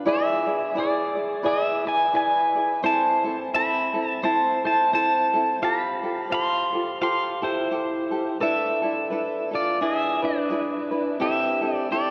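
This Hawaiian piece drifts in a languid, dreamy mood, with a gentle swung lilt. An electric pedal steel guitar carries the melody up front, its clean, twangy tone compressed and played with fingerpicks, sliding between notes and blooming through volume swells. Beneath it, a tenor ukulele, also up front, gives a light, fingerpicked acoustic accompaniment that moves from E7 through Am and Fadd9 before settling on Am7. Both instruments play together throughout the roughly 12.1-second passage, which is cut from a longer piece. A deep, wet cathedral reverb surrounds the pair, giving the recording the spacious glow of a church or concert hall.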